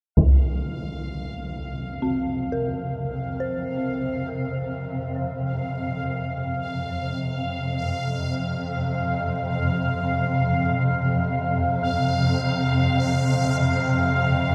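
Ambient in free time, this unsettling, ominous excerpt opens with a bright, bubbling synth texture of resonant, randomly stepped filter tones high around F5, treated with chorus and reverb. From 1.6 s a swarming, tense granular drone settles low between F2 and C3, evolving up front, and at 2.0 s an eerie, inharmonic FM bell adds mellow, decaying arpeggios between C4 and C5 through chorus and diffuse delay. All three parts fade in together from 0.2 s, and the whole is bathed in a huge, wet reverb with a long tail.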